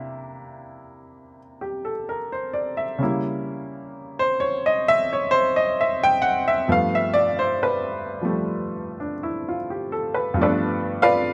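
Relaxed and swinging, this 11.3-second excerpt of solo jazz in G mixolydian drifts at a rubato 65 BPM in 4/4 with a gentle eighth-note swing, as a clear, natural-sounding baby grand piano with short sustain sits up front, close and detailed in a nearly dry room, moving from C9 through C#dim7 to G9 across a range from G2 to G5.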